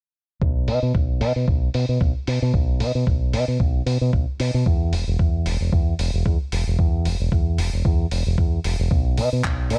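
Sleek and cosmic in mood, this nu-disco excerpt moves at 113 BPM in 4/4 with a light 16th-note swing, cut from a longer piece. A fingered electric bass run through an envelope filter carries the low end from 0.4 seconds, ranging from E1 to B2 and sitting up front with a direct, warm tone. An electronic kick drum enters alongside it, thumpy and compressed with a tape-warmed, sampler-style character re-recorded in a large room. From 0.7 seconds a dusty soul sampler-style kit adds handclaps and hi-hat further back in the mix, its hats, snare and room softened by low-pass filtering. The whole recording is dry and gritty, with little reverb, giving the groove a close, hardware-driven feel.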